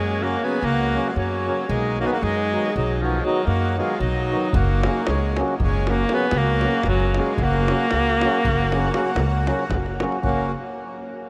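A bright alto saxophone carries the melody up front, singing with vibrato and a smooth top in a classical style over this wild, festive Balkan wedding band piece in 11/8 at 232 BPM, counted in eighths with a straight feel in F# major. Beneath it, an accordion plays a reedy, full second line, while a mellow, round accordion, close-miked and dry, supplies accompaniment from 0.2 seconds. The upright bass is woody and thumpy with gut strings, plucked and placed up front, anchoring the harmony as it moves from F# to B and back to F# at 4.5 seconds. At that same moment a tight, vintage-sounding davul enters in the background. A huge, wet ambient reverb soaks the mix in a dreamy haze, and the clip is cut from a longer piece.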